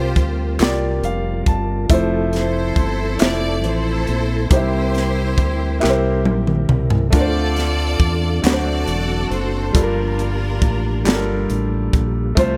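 A lightly reverberant, polished studio sound carries this slow, reverent and uplifting gospel excerpt in 6/8 at 46 BPM, where bright, lush bowed strings sing the melody over clear concert grand piano accompaniment with a fill at 0.6 seconds, mellow flute-like tonewheel organ chords through a slow rotary speaker, a round, punchy fingered electric bass, a crisp fusion drum kit with a high-tuned snare and a fill at 5.8 seconds, and band-limited group handclaps in the background, moving through chords from C7sus4 and Fmaj7 to Gm7.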